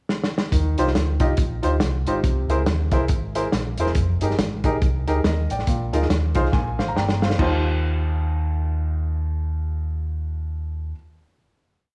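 A round, punchy fingered electric bass walks and runs through this hopeful, uplifting uptempo gospel piece in Eb major at 140 BPM with a swung 4/4 feel, weaving in chromatic approach notes beneath a driving two-beat praise groove from a dry, muffled soul drum kit with dark cymbals and a tight kick. A woody upright piano with audible action noise places close-voiced off-beat chords over a progression that moves from Eb69 through C7alt, Fm11 and Bb7sus4 to Bb13, adding a short fill from 6.1 seconds. The drums open with a fill during the pickup bar and stop at 7.5 seconds, leaving piano and bass to ring out on a closing Eb69 chord in a small room with light reverb.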